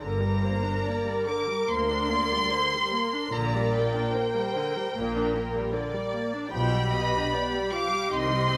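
From the first moment, a solemn, elegiac slow romantic movement for string orchestra in G minor unfolds at 71-80 BPM with rubato, as muted violins carry a veiled melody up front with vibrato and a lush, close second violin line sits beneath, over violas with a soft attack, distant cellos and smooth-topped double basses, every section con sordino, while the harmony moves from Gm to G7/B inside a large studio reverb across this 8.6-second excerpt cut from a longer piece.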